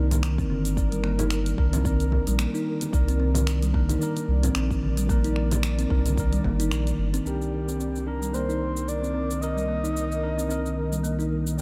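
Set in a light reverb, this organic downtempo excerpt has a mystical, hypnotic pull, with a swung groove built on a woody, fingertip-plucked kalimba playing low-passed, delayed arpeggios, a worn, slightly out-of-tune tine electric piano with overdrive, delay and sidechain pumping, and an ethereal, airy pad of detuned, wave-folded chords glowing in the background. A round, deep analog bass sits up front over a deep house kit of cabasa, finger snaps and dark hats, soft-handed vintage congas, and a layered electronic kick that drops out at 6.6 seconds. At 7.3 seconds a breathy, flute-like synth lead with vibrato, chorus and delay takes the melody while the kalimba moves through a filter sweep.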